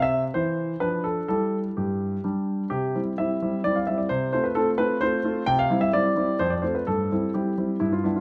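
A clear grand piano carries this brief, cheerful passage alone, an elegant classical-period sonatina in C major cut from a longer piece. It moves at 129 BPM in a straight 3/4, spanning F2 to G5 across its 8.2 seconds. The tone is intimate and polished, with long sustain and the sound of the action audible under the notes, captured up front by close, detailed microphones. A moderate recital hall reverb gives the piano a sense of space around its present sound. The opening phrase moves from C through Dm/F and Emadd11/G to a G5 chord, and at 2.7 seconds a new section begins, circling between C and F harmonies before settling on C/G.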